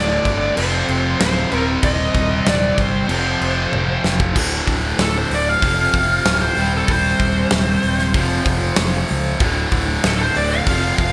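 Heavy and driving, this hard rock excerpt moves at 95 BPM in D phrygian. A bright overdriven electric guitar, a hollow-body semi-hollow guitar with ensemble chorus, and a double-tracked high-gain guitar that drops out at 4.3 s grind out riffs over D5, F5 and Cm/Eb above a growly fingered bass. A huge arena drum kit with a punchy kick, fat snare and gated reverb enters at 0.3 s and sits up front, while a dark, bluesy lead guitar with distortion and digital delay carries the melody and takes a solo from 4.4 s, all framed by bright 1980s-style digital production and a lush hall reverb.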